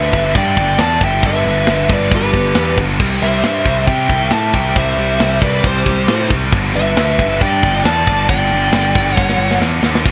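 A straight 4/4 pulse at 136 BPM drives this heavy, dark heavy metal excerpt, cut from a longer piece and lasting about ten seconds. A tight metal drum kit, entering at 0.1 s, sets the groove with a tight kick, a medium-tuned snare, hi-hat and bright crash cymbals, and closes with a drum fill from 9.2 s. Underneath, a growly fuzz bass sits up front, picked and overdriven, while a double-tracked, scooped high-gain guitar churns out the low riff. On top, a dark, bluesy overdriven lead guitar carries the melody with distortion and tape echo, joined by a second high-gain lead line a little lower and further back. The harmony moves from G to C and then to a G power chord, all set in a small room ambience.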